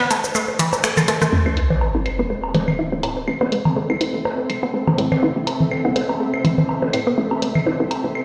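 A squelchy, resonant blip pluck opens this hypnotic, cool minimal techno excerpt, its bright sawtooth riff colored by phaser and digital delay. It is soon joined by an overdriven analog drum machine of finger snaps, hi-hat, rim click and shaker, plus up-front woodblock, bongos, claves and congas that carry a large-room sound. The opening break ends with a drum fill and a band accent. At 1.3 seconds a sub drop impact arrives as a hollow, bouncy FM bass enters over an A minor chord, while a filter sweep runs across a synth arpeggio sound. A very quiet, flickering grainy texture and, from 2.1 seconds, a cloudy, evolving granular pad fill in the upper register, blurred by their own built-in reverb. The swung groove sits in a moderate plate reverb and the stony echo of a bare room played through a big sound system.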